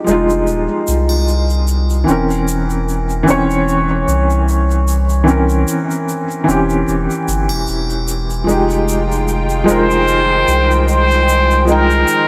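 Brooding and smoky, this slow trip hop excerpt at 75 BPM in F minor sets a soft felt-muted upright piano, with audible action noise, tremolo and analog delay, over a round, deep analog bass and a close, dry egg shaker and triangle, moving from Fm9 to C7b9/E before veiled con sordino strings enter at 8.5 seconds and a brilliant, punchy plunger-muted trumpet with tape echo takes the melody at 9.7 seconds, all in an echo-heavy mix dusted with vinyl crackle.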